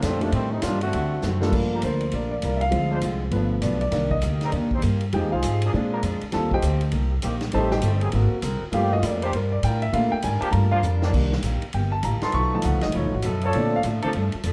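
A dark, lightly reverberant production frames this swinging, brassy big band jazz clip in 4/4. A bright trombone section with light vibrato and a soft attack takes the opening solo up front before a drum fill, and then hands over to a warm concert grand piano that carries the solo from 1.5 seconds, its intimate tone showing audible action noise, deep bass and long sustain. Beneath the piano, a mellow, vintage-sounding trombone section holds sustained chords from 1.7 seconds, while a woody pizzicato upright bass with steel strings sits up front. A boxy, picked old ladder-braced acoustic guitar fills in the background, and the big-band drum kit adds a medium-tuned snare, punchy kick, ride, hi-hat and crash in a natural big-room sound, with a second fill at 10.8 seconds. The harmony moves through minor-key turns such as Am7b5 to D7 and Cm7 to B7#11, ending on Bbmaj7 as the clip cuts off.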